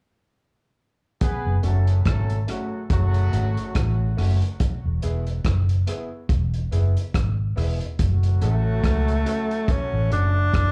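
A muffled, lo-fi drum kit with punchy kick, hi-hat and rim click opens this laid-back, meditative roots reggae excerpt at 71 BPM in F# minor at 1.2 seconds, alongside a distant, roomy horn section in octaves carrying tape and slapback echo. A dark, round, foam-muted electric bass follows up front at 1.5 seconds, and woody upright piano stabs with long sustain join at 1.6 seconds. Over a swung sixteenth feel moving from F#m to E, a breathy, whispered tenor saxophone with vibrato and scooped notes enters up front at 8.4 seconds, all heard as a live gig through the club PA with light reverb.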